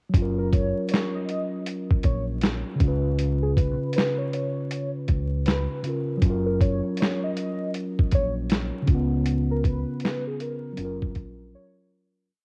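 A slumped, off-grid boom bap beat swings its sixteenths at 79 BPM in 4/4, with a thumpy kick, medium-tuned snare and hi-hat from a gritty, compressed sampler-style kit that sits up front with a tape-softened edge. This short, dreamy lo-fi hip hop piece in F# major rests on a mellow tine electric piano playing clean, held chords in spread voicing, repeated like a sampled loop and filtered through cassette tape. A deep, round dub bass plays a sparse fingered line with slides, moving between F#maj7 and C#7. Above it, a velvety synth lead blending sawtooth and triangle waves with wave-folding, chorus and vibrato sustains a short looping melody with a dark tone. The whole piece carries light reverb, a digital ambience and vinyl crackle with a home-cassette character, fading out from 9.3 seconds into a brief break at 11.5 seconds where the electric piano and synth lead linger.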